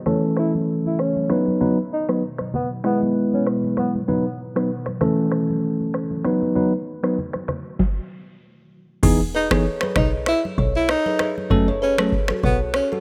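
A breathy, close-miked tenor saxophone carries the melody of this breezy, sunny afrobeats excerpt, its jazz-style phrases full of vibrato, subtone and scooped notes, touched with delay and set up front. Beneath it, a bell-like tine electric piano accompanies clean and direct over chords moving through A, B and E. A booming analog drum machine with a deep kick and tonal snare mixes kick, snare, rim clicks, finger snaps, shaker and crash with a light swing, while soft-handed, close and dry congas add a bright, thin-skinned layer. A moody pad of detuned sawtooth and sine tones with a sub octave sits in the background with chorus and reverb, as a filter sweep runs through the first section until a brief stop at 7.8 seconds. The second section arrives at 9.0 seconds on Emaj7 and F#m, bringing a punchy, woody log drum bass and a ringing kalimba riff with a hollow-box, thumbnail-plucked tone and delay as the saxophone returns, all under a rough home-demo sound with light reverb and a low-pass filter.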